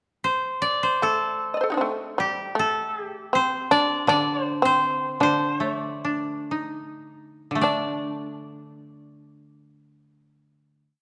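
Calm and austere, this complete piece of Japanese chamber music moves in a rubato 2/4 between 50 and 82 BPM, centred on D in the sen mode and tuned to A4 = 438 Hz. A dry, woody koto opens with an ornamented modal melody; the buzzing, percussive, plectrum-plucked fretless shamisen joins at 1.0 s on the same line with its own ornaments; and a second koto adds a low-string accompaniment from 4.1 s, as the tempo slows toward a final chord at 7.6 s. Both kotos are played with fingerpicks, and the up-front instruments sit in a moderate concert-hall reverb.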